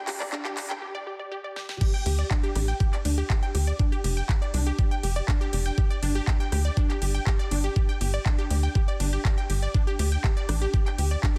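A knocking, up-front electronic kick arrives at the drop at 1.8 s in this emotional, driving progressive house excerpt, joined at 2.1 s by a dark, punchy sawtooth sequencer bass with ring modulation and sidechain pumping, while a lush, detuned unison pluck plays arpeggios through dub echo and pumping after a filter sweep across the brief build-up, and a tape-warm pop kit of fat snare, crisp hats, handclaps, rim clicks and crash and ride cymbals sits lower in studio reverb within a dense, heavily limited master.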